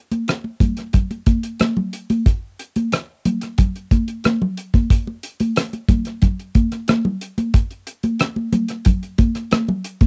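This recording sounds like a home cassette tape, with a dull, muffled top and a moderate, short booth ambience. It is a soul groove at 91 BPM in 4/4 with a straight feel, cut from a longer piece, and its mood is silky and cinematic. A cloth-damped, thuddy drum kit plays from 0.1 to 10.1 seconds, sitting up front with a dry, dark, smooth character, a tight kick, a rolled-off top and a cassette tape colour, using hi-hat, kick drum and rim click. Congas run alongside for the same span, slightly lower in level but still up front, with a bright, thin, high-tuned, damped skin sound and soft hands, heard close and dry.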